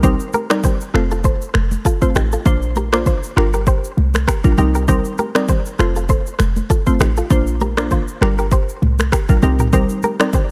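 A glassy wavetable pluck sits up front with a crystalline, slightly nasal and full-bodied tone, its chorus-treated notes carrying a touch of noise and a filter sweep as it lays down the accompaniment in this short afrobeats excerpt. Beside it, a direct-recorded clean electric guitar plays a twangy, compressed, picked riff through analog chorus and digital delay. A punchy, tight 808-style bass with a mellow sine core stays up front until 9.8 s, while an electronic afro-pop kit with a deep kick drives things along with finger snaps, rim clicks, shaker and toms, and very quiet, close, dry congas add bright, damped hand hits beneath. The groove moves at 99 BPM in 4/4 with a light 16th-note swing, tuned slightly below standard pitch, and cycles through Cm7, F, Bbadd9 and Gm7 twice before landing back on Cm7. The mood is romantic and sunny, set in a digital ambience.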